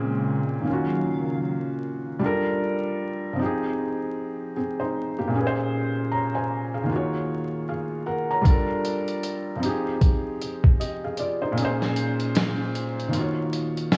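Set in 4/4 with a lazy swing on the sixteenths, this hazy, nostalgic lo-fi hip hop excerpt opens on a brief break where a felt-muted upright piano sits close and intimate, its mechanical action audible beneath mellow chords. For those first moments a hollow, flute-like pad with a chorused shimmer and a slow, lingering release holds sustained harmony before fading out at 2.2 seconds, leaving the piano to carry the gentle cycle of minor-ninth chords. A gritty, compressed sampler-style drum kit arrives up front at 8.5 seconds, with a thumpy kick, a fat snare and hi-hat carrying the tape-warm character of a big room. The kick drops out at 11.6 seconds, leaving snare and hi-hat over the piano. A moderate plate reverb and a layer of vinyl crackle add a dusty, faded patina to the whole.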